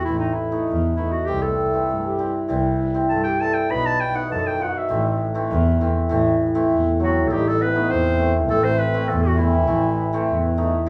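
Festive yet bittersweet, this klezmer fragment opens with a classical-toned clarinet solo through the first 6.1 seconds, carrying the melody over shimmering, ringing hammered dulcimer and a boxy, bowed double bass with vibrato. A bright trombone with light vibrato joins at 1.3 seconds as a present second line in a pop style. The band plays live together in a small room, wrapped in a wet studio reverb.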